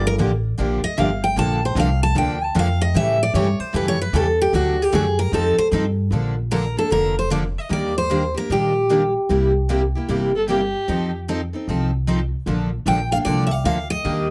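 A bright, full-bodied lead on picked steel-string acoustic guitar sits up front in this playful, swinging excerpt of jazz manouche, taking a solo over the opening 6.1 seconds before the music moves from G minor to Bb major. The tempo is a brisk 152 BPM in 4/4 with a swing feel on the eighth notes, and the lead guitar carries a touch of plate reverb as it pauses around 9.1 seconds and returns near 12.9 seconds. Underneath, a woody, thumpy upright bass with gut strings plucks a dark, close-up foundation throughout. Two more picked acoustic guitars with jumbo bodies fill out the accompaniment, one sitting further back in the mix. A dark, bowed violin with vibrato and a sul tasto tone slips in briefly at 10.4 seconds for a short second line. The close, detailed recording in a lightly reverberant space keeps the strings crisp as the chords move through Gm7, Bbmaj7, Ebmaj7 and F7.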